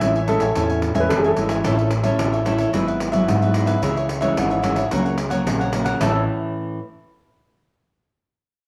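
With a cassette-tape haze, spring reverb and the ambience of a small room, this short, playful cut of samba and choro opens with an intimate concert grand piano carrying the melody, its action noise audible and its deep bass natural, until it drops out at 1.4 s. Beneath it, a crisp, picked cavaquinho and an up-front, fingerpicked classical nylon-string guitar supply the joyful accompaniment, while a bright, direct fingered electric bass colored by an envelope filter holds the low end. A jingly pandeiro played with hard hands sounds distant, as if in a large room, and the guitar is the last part heard, ringing on until 6.8 s.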